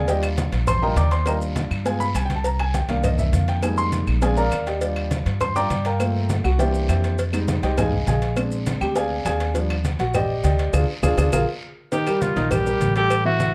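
This sunny, danceable Afro-Cuban jazz excerpt opens with a concert grand piano soloing up front at a brisk 203 BPM in C minor, its intimate, natural tone carrying audible action noise and deep bass. Beneath it, an up-front pizzicato upright bass sounds woody and growly. Congas, cowbell, claves, guiro and maracas sit in the background: low-tuned, thick-skinned congas, a tight high-tuned cowbell, dry claves, a raspy guiro and grainy maracas. The harmony moves through rich jazz chords such as Ebmaj7, Cm9 and Fm11 before the band hits an accent at 10.7 seconds. At 11.9 seconds a clear, vintage-toned trumpet takes a short jazz-style solo with vibrato, landing over an Eb chord as the excerpt ends. Light reverb and a dark, warm production round out the sound.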